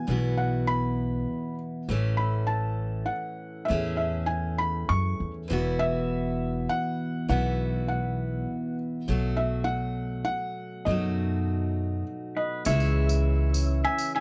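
A soft, felt-muted upright piano carries the melody up front in this hopeful acoustic folk excerpt at 100 BPM in 3/4 and E major, over a bright picked steel-string guitar and a woody pizzicato upright bass moving from Esus2 through Amaj7 and B7 to C#m. A clean pedal steel guitar enters at 12.4 s and, from 12.7 s, a round, dark tonewheel organ with slow rotary speaker and chorus vibrato sits in the background beside a jingly tambourine, in a dry, close 1970s-style studio recording.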